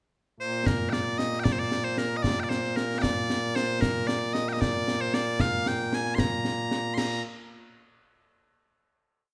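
Close, detailed and lightly reverberant, this short, complete piece of stirring, ceremonial Scottish pipe music in 6/8 at 76 BPM in Bb major opens with piercing, up-front bagpipes carrying an ornamented modal melody with slapback echo from 0.4 s, joined at 0.7 s by a small-room drum section of concert snare playing a marching pattern, concert bass drum and bright clash cymbals, before the piece closes on a final note from 7.0 s.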